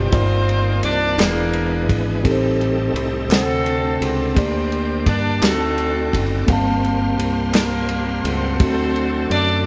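This is a short piece of slow gospel in 6/8 metre, cut from a longer performance, with a solemn, fervent mood. A clear, tight horn section carries the melody in octave doubling with a light vibrato and a vintage tone, while a mellow tine electric piano plays the accompaniment through its built-in speakers. A bright, shouting tonewheel organ holds sustained chords in the background, colored by a slow rotary speaker and chorus vibrato. Underneath, a growly, punchy fingered electric bass plays alongside a dry, muffled soul drum kit of kick, snare and ride cymbal, its top rolled off for a lo-fi, dark-cymbal sound. A crisp group handclap joins in the background from 1.2 to 7.9 seconds, and the whole band sounds as if it is playing live together in a stone room with moderate reverb.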